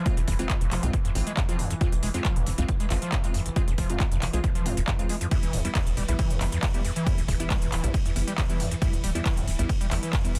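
A punchy, tape-warm electronic kick sits up front in this intense, dark excerpt of driving peak-time techno, alongside a squelchy, gritty acid bass riff with distortion, chorus and delay, a tight, saturated sawtooth sequencer bass, crisp detuned wavetable chord stabs with a cassette-tape tint and delay, smooth hi-hats, handclaps and ride cymbal from a small-room techno kit, and a deep, moody pad drone in the background, all but the kick and kit pumping to the sidechain as the harmony moves from Fm to Em at 5.3 seconds.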